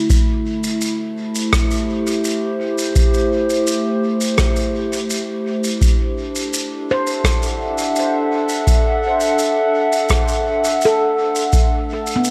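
A warbling, lo-fi pad of detuned, ring-modulated chords opens this meditative ambient dub excerpt, sitting up front with chorus and its own reverb, while a dry, deep analog kick and an acoustic shaker and rim click with dub echo set a straight, unhurried groove. At 6.9 seconds a ringing handpan, played with soft fingertips, adds mellow arpeggios carrying dub echo over the D7 chord, which arrived from Am7 at 5.8 seconds. A moderate spring reverb and small room ambience give the deep, nostalgic mix its gentle space.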